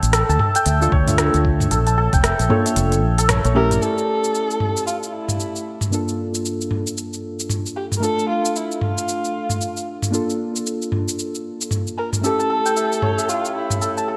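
Shimmering, ringing santur arpeggios open this mystical organic downtempo piece at 114 BPM in A phrygian dominant, with swung sixteenths, over a round fretless electric bass that stops at 3.8 seconds, crisp-hatted, tape-toned electronic drums with rim click, shaker and toms, a gritty, thumpy sampled kick heard only briefly, and muted, felt-like synth keys under a filter sweep with chorus and sidechain pumping, before a woody, bowed kamancheh enters at 3.6 seconds with vibrato and portamento, the whole set in light reverb and digital ambience.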